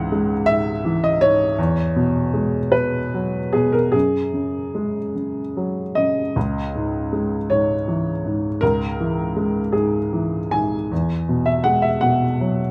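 Closely miked and lightly reverberant, this 12.7-second excerpt of melancholic, reflective neoclassical minimalist piano features a solo dark, worn, boxy baby grand with audible action noise and short sustain, played up front in a rubato 6/8 at 49-55 BPM in C# dorian, ranging from C#2 to G#5 as it moves through C#m, Eadd9 and F#sus2 before repeating its phrase at 6.4 s over C#madd9 and Eadd9.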